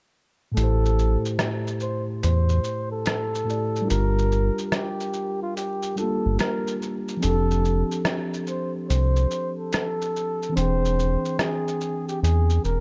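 A round, deep analog bass sits up front in this cosy, mellow lo-fi hip hop excerpt at 72 BPM with swung 16ths, beneath a breathy flugelhorn melody with vibrato, low-pass filtering and analog delay, a clean tine electric piano that enters at 0.5 seconds, and a muffled, pitched-down sampler kit of hi-hat, rim click and shaker carrying 12-bit grit, as the harmony moves through Am7, Gm7, F69 and E7alt in a dark, dry mix.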